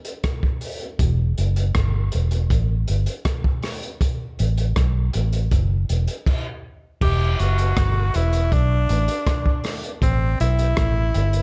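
This spacious, hypnotic dub reggae passage, cut from a longer piece, opens on a crunchy breakbeat kit whose tight kick, rim click, hi-hat and dark crash cymbal sit up front with a saturated, rolled-off top. At 1.0 seconds a vintage, foam-muted fingered electric bass joins, round, punchy and amped, sitting low through Em, Asus2 and Esus2 chords. The opening stretch is a drum break, and a brief stop at 6.3 seconds clears space just before the next section. At 7.0 seconds a raspy tenor saxophone takes a forceful, close-miked pop-style solo, its edgy tone and vibrato shaded by a low-pass filter and trailing dub echo over Em and A5. Studio reverb wraps the dark, warm production in a hazy, roomy atmosphere.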